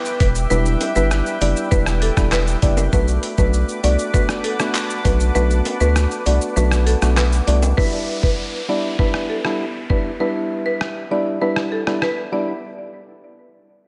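A dreamy, reverb-soaked mix with a lush hall sheen and a softened top carries this hypnotic, bouncy dancehall groove at 99 BPM in E minor, moving from Em7 to Bm7 and back. A gritty, compressed sampler-style drum kit with a thumpy kick sits up front beside a round, deep analog bass, while a detuned, moody pad pumps beneath a buzzing, woody marimba melody with analog delay, hollow chorused organ stabs and background maracas and timbales. The kick drops out at 6.6 seconds, and at 7.8 seconds the pad, bass and hand percussion fall away as an electronic downlifter enters under the drums, marimba and organ.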